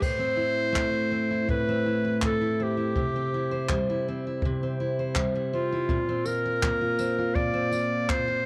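A bright, close-miked clarinet carries a classical-style solo melody up front in this sunny, heartfelt acoustic pop piece, cut from a longer work and moving at 82 BPM in a straight 4/4 over chords of Amadd9, C and Bbadd9. Beneath it, a dark, full-bodied picked jumbo steel-string acoustic guitar provides accompaniment, while a jazz brush drum kit with dark cymbals, a boomy kick, tambourine, handclaps and crash cymbal sits a little further back. Light reverb and small-room ambience give the sound a natural, intimate setting.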